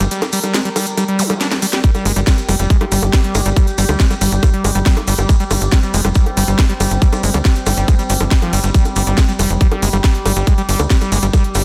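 Psychedelic trance at 139 BPM in G phrygian, intense and hypnotic, where a punchy, nasal sequencer bass drives up front beneath a squelchy, distorted acid riff with delay and sidechain pumping, a background drone of moving overtones with chorus and built-in reverb, crisp hats, cracking snare and bongos from the drum kit, a grainy shekere far back, a faint electronic zap at 1.2 seconds, and a drum fill at 1.4 seconds that ushers in a tight, tape-warm kick at 1.8 seconds, all in a dense, heavily limited modern master.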